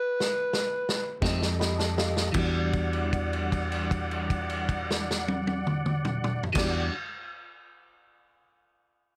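Soulful and brooding, this short slow blues in E minor moves in a straight 12/8 at about 51-60 BPM, slowing down through its opening seconds. An overdriven harmonica, amplified and gritty with light vibrato, tongue slaps and scooped notes, takes a jazz-style solo up front on a B4 during a stop over N.C., while a vintage drum kit with dark cymbals, a tight kick and a saturated, rolled-off top plays a fill from 0.2 s. At 1.2 s the band falls in on an F7: a round, dark fingered electric bass, a bright, compressed clean electric guitar picked through harmonic tremolo, a tonewheel organ holding sustained chords with chorus vibrato and a lush chorus, and a mellow tine electric piano in the background adding a brief fill. At 2.3 s the band settles onto an Em9 held note that rings out, with the drums dropping away at 6.7 s. The dry, close sound keeps the drums and harmonica forward, giving this fragment of a longer piece a gritty, intimate feel.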